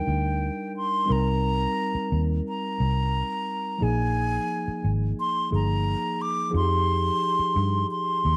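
A moderate spring reverb lends a smooth, bittersweet glow to this short cut from a longer piece of lush 1970s-style soul, moving at 88 BPM in 4/4 with a straight feel and tuned to A4 = 441 Hz. A breathy, close-miked silver concert flute carries the tongued, straight-toned, expressive melody, while a mellow tine electric piano heard through its built-in speakers plays clean accompaniment, and a dark, round, foam-muted, amped fingered electric bass enters at 0.1 s. All three sit up front over chords that pass from Ebmaj7 through Cm7 and Bb7sus4 to Fm9.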